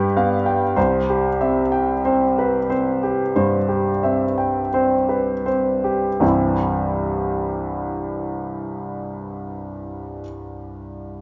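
A clear baby grand piano opens alone on a G7 chord that settles onto C major, a tender, serene romantic nocturne in 4/4 at a slow, rubato 39 to 53 BPM that eases further through its first 6.2 seconds before a new passage begins. The up-front, intimate piano spans C2 to G5 with long sustain, natural tone and audible action noise, set in a recital hall reverb with a 1.4-second decay. A worn cassette-tape quality adds a warbling pitch drift to this short fragment of a longer piece.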